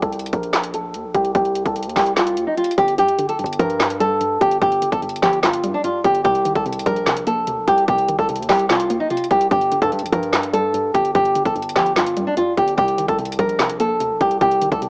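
Heard as if through a small speaker, the recording has a home-cassette character, wrapped in a moderate spring reverb. This brooding, hard-hitting trap piece, cut from a longer work, moves with a half-time feel, led up front by a dark nylon-string guitar, fingerpicked on old strings with a woody, deep classical body and dulled by a low-pass filter and tape. Beneath it, a punchy, heavy 808-style bass with a sine core and a noise layer strikes with a fast attack and then decays. The electronic trap kit sits forward and tape-softened, pairing a hard-clipped kick and metallic hats with snare and handclaps. A filter sweep runs through the opening until 3.0 seconds, when a hollow, bouncy square-wave pluck enters, detuned and chorused over a sub octave, and the kick drops out until 3.4 seconds. The harmony shifts from C7 through G7 and Cm7, keeping the mood shadowy.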